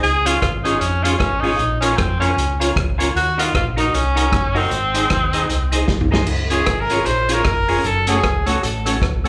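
A bright, vintage-toned tenor saxophone leads this cheerful, bouncy ska fragment, singing the melody up front with vibrato and a slapback echo before giving way at 5.9 seconds. The groove moves at 153 BPM in 4/4 with a swung eighth-note feel in Db major, carried by a dark, round fingered electric bass and a vintage acoustic drum kit with dark cymbals, a punchy kick, rim clicks and toms in a pumping small room. A twangy, clean electric guitar and a mellow tonewheel organ with key click, chorus vibrato and fast rotary speaker enter at 0.3 seconds, the organ sitting in the background with percussive stabs. After a drum fill, a punchy trumpet with vibrato takes a solo from 6.5 seconds, sounding distant and roomy. The whole performance comes across as a live gig heard through the venue's PA, with light club reverb, and it is cut from a longer piece.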